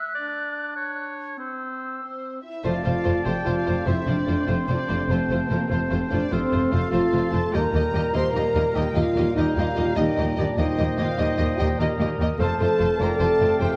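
Heroic and adventurous, this cinematic film-score excerpt moves at 98 BPM in 12/8, set in F major and tuned slightly low to A4 = 438 Hz. It opens with woodwinds carrying second lines over D and C chords: a pure, close-miked flute sits high above a lightly vibrato oboe and a soft, roomy clarinet. Soon a dark French horn section enters with sustained chords, the most prominent voice in the mix, joined by a second violin line. At 2.6 s the main section arrives as lush, expressive violins take the melody over rich, distant violas, a smooth double bass section and background cellos, while tight trombones add chords beneath. The harmony moves from F to Eb at 7.5 s before returning to F, and the ensemble sits in a moderate scoring-stage reverb, with a worn cassette-tape quality giving the sound a warbling pitch drift.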